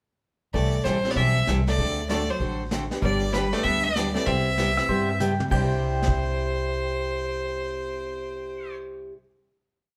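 A live-in-one-room band sits in a lush studio reverb on this short, playful western swing piece in C major at 193 BPM, with a swing feel. Up front, a rich, biting fiddle with light vibrato states a motif-based melody. A dark, hollow-body archtop guitar shadows it with a harmony line mostly in thirds, while a picked acoustic guitar chops four-to-the-bar rhythm and a woody upright bass plays two-beat root and fifth with walk-ups. Underneath, a slightly detuned upright piano comps syncopated close voicings in the background, and a vintage kit keeps a brushed backbeat with snare sweeps until a fill at 5.2 seconds leads into the final chord. Just before, at 4.8 seconds, a clean, compressed pedal steel enters, adding volume swells and answering blues licks.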